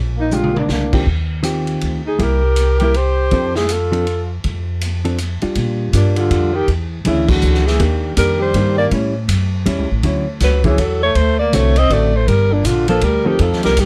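A woody, up-front pizzicato upright bass opens this relaxed, sophisticated swinging jazz waltz in 3/4, cut from a longer small-group piece, and a quick drum fill from the kit arrives at 0.3 seconds. The melody belongs to a breathy alto saxophone, played with subtone, vibrato and scooped notes, while a soft-attacked tenor saxophone sits more distant and roomy underneath on a second line. A dark, clean, fingered hollow-body electric guitar supplies compressed accompaniment through the rich, extended harmony. The drum kit, heard across crash and ride cymbals, hi-hat, snare, punchy kick and toms, sounds far back in the studio room with a rolled-off top. A new section begins at 5.6 seconds, and the whole band hits an accent at 7.2 seconds, all in a dry mix.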